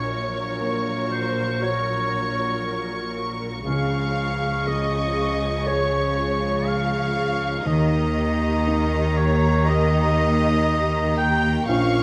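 A distant, roomy oboe shares a second line with a soft-attack, expressive violin section in this sorrowful, moving orchestral film-score excerpt, which unfolds with a rubato feel in 4/4. Above them, another violin section carries the high melody with light vibrato and an even, smooth tone, while a lush viola section and a natural-sounding grand piano in the background fill the accompaniment. An intense, clear cello section and a rich double bass section anchor the low end, and a moderate recital-hall reverb surrounds the ensemble.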